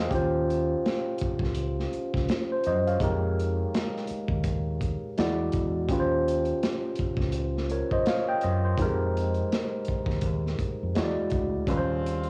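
An overdriven tine electric piano carries the accompaniment in this soulful neo-soul R&B excerpt, its barky, gritty tone pushed through a combo amp with subtle chorus and cassette-tape coloring as it cycles through lush Eb13, Fm11 and E9 chords at a relaxed 83 BPM with a swung sixteenth feel. Beneath it, a deep, round, dark fingered electric bass with tube saturation anchors the low end, while a crunchy, punchy breakbeat kit of kick, medium-tuned snare and hi-hat sits up front with a saturated, rolled-off top. At 11.7 seconds, an edgy, close-miked jazz saxophone section enters with brief vibrato stabs, all wrapped in light reverb and the soft haze of a home cassette recording.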